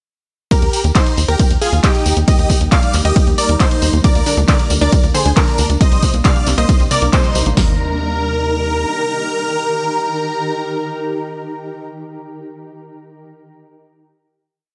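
A huge, detuned supersaw lead carries this euphoric, soaring uplifting trance piece at 136 BPM in Eb major, playing a repeating riff melody in thirds and sixths, coloured by phaser, delay and sidechain pumping. From 0.5 seconds the piece launches straight into a drop, where a punchy, tape-toned analog drum machine sits up front with a four-on-the-floor kick, snare and open hats. A second kit layer adds programmed claps, closed and open hats and ride, and a jingly vintage tambourine plays hand-played sixteenths in the background. A tight, nasal sequencer bass gallops in sixteenths with tube saturation, while a round analog pluck doubles the anthem line in unison, and another pluck adds a 16-step arpeggiated sequence from 4.0 seconds. A shimmering, ethereal pad with an octave-up shimmer and granular texture holds sustained chords through the Eb, Bb/D and Cm7 changes, and the piece comes to rest on a final Eb chord at 7.6 seconds in a light reverb.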